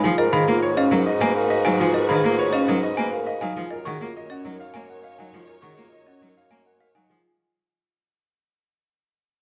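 Hypnotic and meditative, this fragment of minimalist classical pattern music in 3/4 fades out across its full length as the harmony moves from Abm9 to Ebm9/Gb. A warm grand piano carries the melody over a rich, focused solo cello and a present bassoon bass, while a woody, dry trough xylophone played with soft rubber mallets and a metallic, ringing vibraphone with its motor off spin arpeggios. From 0.2 seconds a studio string section holds smooth, expressive chords with vibrato and portamento in the background, and the ensemble sits in a moderate recital hall reverb.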